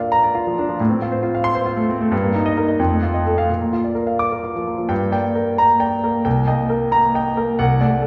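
This classical virtuoso piano study, cut from a longer piece, has a heroic, brilliant mood, moving in a rubato 6/8 at 89 BPM by the dotted quarter. A solo concert grand with a clear, natural tone, deep bass and short sustain ranges from C2 to D6, opening in Bb major before turning to G minor at 4.9 seconds. The instrument sits forward yet is heard from further back in a recital hall whose wet reverb lingers around 1.6 seconds, and the top end is softened.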